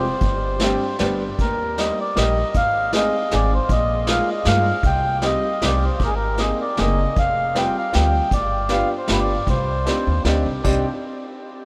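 A mellow, reedy accordion sits up front and carries the melody, its round, single-reed voice giving this nostalgic, whirling musette waltz its character. Beneath it, a clear, woody upright piano supplies the accompaniment, while a dark pizzicato upright bass with steel strings anchors the low end. A vintage drum kit played with brushes enters at 0.2 seconds, sounding distant and roomy with a punchy kick, a medium-tuned snare, hi-hat, crash cymbal and a rolled-off top. The rubato feel lets the three-beat pulse breathe as the harmony moves through suspended and added-note colours, from Gsus4 through Abadd9 and G7 before settling on Cmadd9. A huge, wet ambient reverb places the ensemble in a vast, echoing space, and the accordion falls silent at 10.2 seconds, just before the passage ends.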